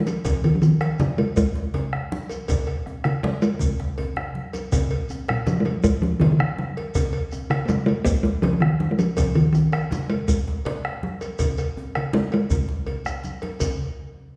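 Bathed in the wet reverb of a recital hall, this earthy, festive West African drum ensemble excerpt moves at 108 BPM in 12/8, with a resonant, up-front talking drum carrying the melody in Db major pentatonic over a round bombo, a deep djembe with metal rattles, ringing medium-tuned congas played with soft hands, a metallic, band-limited cowbell and a grainy, mellow shekere, and drum fills breaking in at 3.8 and 12.9 seconds.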